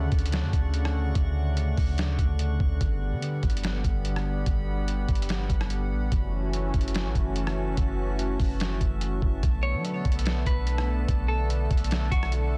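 A half-time 4/4 groove from a gritty, pitched-down, sampler-style drum kit anchors this hazy, melancholic cloud-rap piece, with a thumpy kick, a medium-tuned snare, rim clicks and hi-hat sitting up front with a compressed, tape-colored sound that was re-recorded in a small room. Beneath it, a soft, round 808-style bass with a fast attack and decaying tail supplies deep, dark low end throughout. A smooth analog pad, built from detuned sawtooth, square and triangle waves with a sub octave and a touch of ring modulation, holds slow-attack sustained chords through Dmaj7, Gmaj7 and F#m7 before settling on Bm7, its lush chorus breathing with sidechain pumping. Far in the background, a glassy texture of drifting sine overtones hangs calmly under chorus and reverb. At 9.6 seconds a dark, clean, picked electric guitar enters with a short melody, filtered and colored by spring reverb and tape echo. 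The mix is dense and heavily limited with a digital ambience, and the music is cut from a longer piece.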